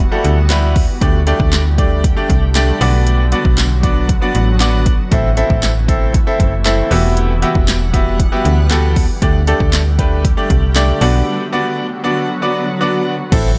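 Bittersweet yet confident, this dance-pop cut moves with a straight drive, built on a deep house drum kit whose deep kick, punchy snare, metallic hats, handclaps and crash are overdriven and up front, while a snappy, slap-like FM bass with a metallic attack pumps beneath. A bright grand piano with audible action noise and long sustain sits close and present over a shimmering, ethereal pad that carries detuned, granular sustained chords bathed in chorus and its own reverb, both pumping to the sidechain, as a very quiet, jingly tambourine plays until 10.9 seconds. The chords cycle through Emadd9, Dsus4, Bm and Am in a dry mix before a break at 11.3 seconds.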